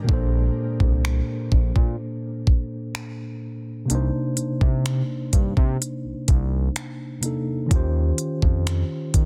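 Romantic and smooth, this short clip from a longer contemporary R&B piece moves at a relaxed 63 BPM in straight 4/4, set in Bb major. A mellow, clean tine electric piano provides the accompaniment from the very start, sitting up front with a direct sound as it moves through lush Bbmaj9, Cm9 and Eb13 chords. A saturated synth bass joins at 0.1 seconds, blending sawtooth and square wave tones into an evolving, sustained low end with a fast attack and vibrato. The electronic trap drum kit enters at the same moment with a knocking kick, crisp hi-hats and finger snaps, its tape-warm character and soft clipping on the snare giving it a produced edge. All three parts are placed up front in a dry, dense and heavily limited modern mix that carries through to the end at 9.3 seconds.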